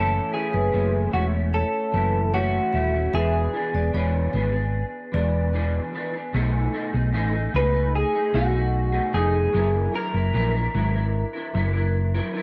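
A light reverb gives this hazy, mellow indie pop piece, cut from a longer work, a soft sense of space, with a straight, unhurried feel in four. A bright, twangy electric guitar played through a small old amp carries the melody with a picked, slightly broken-up tone, dressed in lush chorus and slapback echo. Beneath it, a second guitar through a similar amp plays accompaniment with a warm, compressed sound that sits up front, its ensemble chorus and warbly pitch drift adding a woozy shimmer. A dark, round hollow-body short-scale bass, fingered and amped, sits up front in the mix. A ringing, metallic vibraphone struck with medium hard mallets, motor off, traces a second line in the background with the same lush chorus and slapback echo, dropping out at 5.7 seconds. The harmony moves from Amaj7 to E7 in the opening section, then shifts to B13 and F#7b13 in the second section, which begins at 6.3 seconds.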